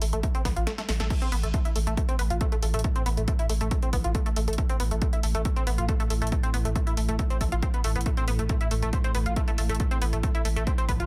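A straight 4/4 pulse at 138 BPM drives this industrial peak-time techno cut in A minor: a punchy, up-front electronic kick and a tape-warm kit of snare, hi-hat and crash run a short fill as the kick drops out at 0.7 seconds before the drop lands at 1.1 seconds, a thick, overdriven sub bass and a tight, detuned sawtooth synth riff with chorus, overdrive and tape echo pump against the sidechain, and from 1.8 seconds a moody, full-bodied ambient pad drones in the background of a dense, heavily limited, dry master.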